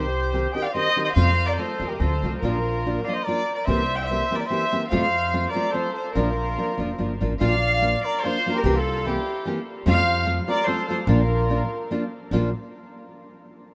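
Proud and romantic, this mariachi-style Mexican folk excerpt moves at 146 BPM in 3/4 and B-flat major, with a reedy, gut-string violin section carrying the melody over a mellow, punchy trumpet second line until both stop at 11.9 seconds, while a full-bodied, fingerpicked nylon-string guitar and a woody pizzicato upright bass continue to 12.5 seconds, all under light reverb.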